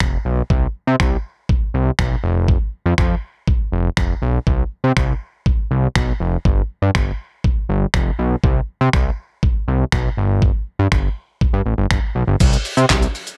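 From the first beat, a gritty, compressed soul-sampler drum kit with a thumpy kick, medium-tuned snare, snaps, handclaps, hi-hat, shaker and crash sits up front beside a fat, detuned sawtooth analog bass whose filter sweep and sidechain pumping drive this summery, upbeat dance-pop excerpt at 121 BPM, in a dry mix that runs about 13 seconds.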